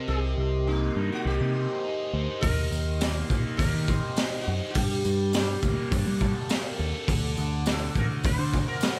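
Heard in a studio ambience, this dark, trippy psychedelic rock excerpt opens with a double-tracked fuzz guitar riff through a phaser, a buzzing sitar melody with tape echo and shimmering sympathetic strings, a round overdriven picked bass up front, and a mellow, flute-like tonewheel organ holding sustained chords through a slow rotary speaker in the background, before a raw garage drum kit with a boomy kick, a high-tuned snare and hi-hat and a very quiet, jingly tambourine enter at 2.4 seconds as the harmony moves from Cm7 through Eb6 and Gmadd9 to D.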